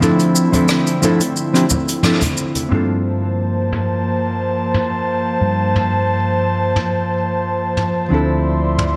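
Warm and smooth, this 89 BPM sunset chillout piece, cut from a longer work, opens on a break where a dark, clean hollow-body jazz guitar with digital delay and an airy, breathy pad with chorus sit up front over Dm9 alongside a soft brush kit of hi-hat, rim click, shaker and toms under low-pass filtering. Bright hard-handed congas then play from 0.5 to 2.7 seconds, before a band accent at 2.0 seconds leads into Gm11 at 2.7 seconds, where a round, punchy fretless bass enters, the drums take on a filter sweep, and the harmony returns to Dm9 at 8.1 seconds within a lush hall reverb.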